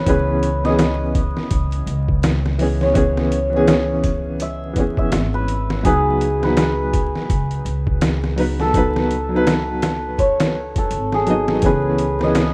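A swung 83 BPM trip hop groove in 4/4 rides on a gritty, pitched-down sampler-style kit with a thumpy kick and medium-tuned snare, set up front in small room ambience, while a woody, gut-strung pizzicato upright bass with tube saturation anchors the C# minor harmony as it moves from C#m7 to B/C# and back. A felt-muted upright piano, soft and intimate with tremolo and 12-bit sampler grit, sits forward beside a shimmering hammered dulcimer melody colored by tape echo, giving this hypnotic, smoky excerpt its ringing top line. At 11.6 seconds a barely audible reversed, detuned granular texture creeps in beneath the rough home-demo mix and its vinyl crackle.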